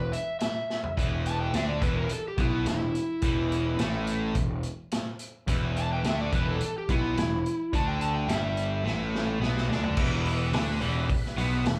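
A dark, overdriven slide guitar played with fingerpicks carries the melody up front from the start, over a bright, double-tracked distorted guitar riff with slapback echo and a round, fuzzed picked bass in a brooding, gritty blues rock and southern rock groove cut from a longer piece. A vintage acoustic kit with dark cymbals, a tight kick and a rolled-off top drives the straight 4/4 feel, adding fills at 0.7 seconds and between 8.9 and 10.0 seconds. At 10.0 seconds a very quiet, thick tonewheel organ with slow rotary speaker enters on sustained chords, all captured as a live club gig through the venue's PA.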